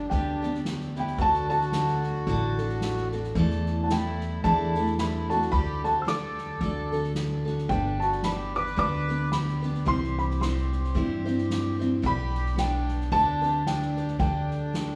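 Hopeful and gentle, this swung acoustic folk passage, cut from a longer piece, carries a dark, mellow upright piano melody with long sustain over a reedy, smooth accordion second line and a bright, full-bodied picked steel-string guitar accompaniment. Up front, a woody, thumpy pizzicato upright bass holds the low end, while a soft-mallet drum kit adds a boomy kick and a medium-tuned snare with a natural, hall-like sound. The band plays live together in a small room with moderate reverb, moving through G, D, suspended chords and C.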